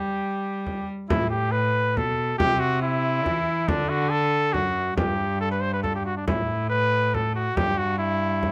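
Set in light reverb, this short excerpt of a rustic, courtly Renaissance-style consort dance in A dorian moves in 3/4 at 139 BPM, with an up-front, clear, punchy solo cornet melody over a rich, reedy bowed cello bass of gut-string tone and light vibrato, and a warm acoustic frame drum struck with hard hands joining at 0.7 s.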